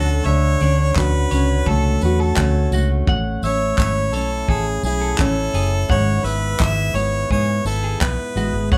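A harmonica with light vibrato carries a sunny, heartfelt melody from the start, over a full-bodied fingerpicked dreadnought acoustic guitar, a slightly broken-up electric guitar playing arpeggios in the background, and a round, foam-muted vintage electric bass sitting up front. At 0.6 seconds a dark brush kit joins with a punchy kick, handclaps and tambourine, settling the acoustic pop groove at 85 BPM in a straight 4/4. Cut from a longer piece and tuned to A4 = 437 Hz, it moves through Dmaj7, Amaj7 and C#m7/G# in A major, with the band playing live together in one room under moderate studio reverb.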